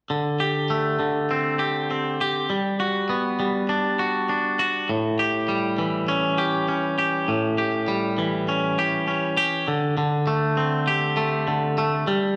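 A straight 4/4 pulse at 100 BPM carries this rock fragment, cut from a longer piece, with a cinematic, euphoric mood. A lone twangy electric guitar plays solo throughout, from 0.1 to 12.4 seconds, ranging from A2 up to G4. Its tone is bright, clean and picked, with a compressed, twangy character that keeps it up front in the mix. The harmony moves from D7sus4 to Gmaj7 and then A7 before returning to D7sus4 at 9.7 seconds, where a new section begins. A wet recital hall reverb with a 1.6-second decay surrounds the guitar, giving it the open, ringing space of a church or concert hall.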